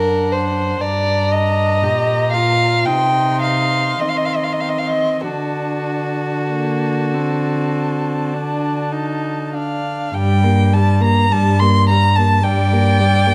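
Flowing freely in a rubato 4/4, this slow, romantic string quartet movement feels yearning and elegiac, cut from a longer piece. A dark, woody first violin with vibrato and a smooth top carries the melody, while a second violin, bowed sul tasto and placed close and up front, sings a second line. Beneath them, a rich, pure viola floats a soft-edged accompaniment and a warm cello holds the bass, both with gentle attacks, all in light reverb captured by detailed microphones until a new section arrives at 10.1 seconds.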